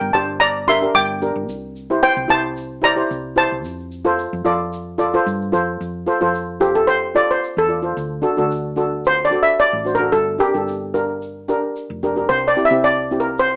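Heard through a small-speaker sound with moderate studio reverb, this short cut from a longer calypso piece has a bouncy, festive mood at 111 BPM in F major, with a light swing on the sixteenths. A lead steel pan, played with medium rubber sticks, carries the melody up front, its close-miked, metallic tone shimmering from the upper middle register into the high range. Beneath it, a double-seconds steel pan struck with soft rubber sticks supplies a mellow, softer accompaniment in the middle register. A hollow-body short-scale electric bass, fingered and amped, adds a dark, round low end. A grainy, bright egg shaker sits far back in a small-room sound. After the opening passage over Gm, C and F, the lead pan takes a solo from 5.8 seconds to the end at 13.6 seconds as the harmony shifts through D, Gm7 and C.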